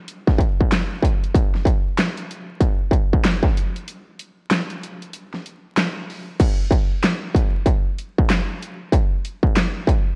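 An up-front, layered electronic dubstep drum kit drives this gritty, dark hip hop fragment, with a distorted kick, a huge snare, handclaps, bright hi-hats and crash cymbal riding a swung 16th-note feel in 4/4. A break arrives at 3.9 seconds and gives way to a new section at 6.4 seconds. The kit's sound is tape-warm, and the whole recording carries light reverb, worn cassette warble, warbly pitch drift and vinyl crackle.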